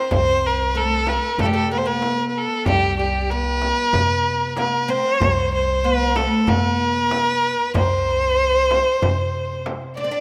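This Arabic maqam ensemble piece sounds passionate and festive in a steady, straight 4/4. A single rich, nasal violin carries the melody up front, bowed smoothly and evenly with vibrato and a slightly boxy tone. Beneath it, a bright, woody oud plucked with a plectrum on its fretless double strings plays a second line, while a dark, thumpy upright bass on gut strings plucks the low end. In the background, a deep clay-shell darbuka played with soft hands and a frame drum struck with hard hands provide the percussion. At 10.0 s, a lush symphonic violin section with a soft attack briefly joins on a single high note. A moderate hall reverb wraps this cut from a longer piece in a spacious glow, though the mix has the rough character of a home demo.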